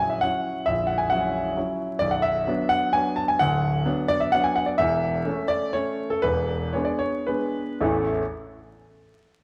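A clear, intimate grand piano opens this sparkling, graceful classical waltz excerpt in A major, playing alone in 3/4 with a rubato feel that moves between 102 and 141 BPM. Sitting up front with its action noise audible, the piano traces a progression from F#7/A# through Bm and E7 to a resolution on A at 7.8 seconds, and it stops at 8.2 seconds. A moderate recital hall reverb surrounds it, while worn cassette tape warble, pitch drift and vinyl crackle give the sound an aged character.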